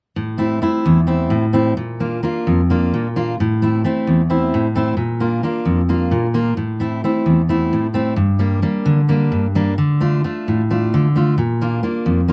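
Intense and driving, this Greek folk excerpt in A Phrygian runs at 262 BPM in a straight 7/8, with a full-bodied jumbo steel-string acoustic guitar fingerpicked up front as accompaniment through Am, Bb, Gm and Dm changes from 0.2 to 12.3 seconds, set in light reverb in an outdoor recording marked by lossy compression artefacts.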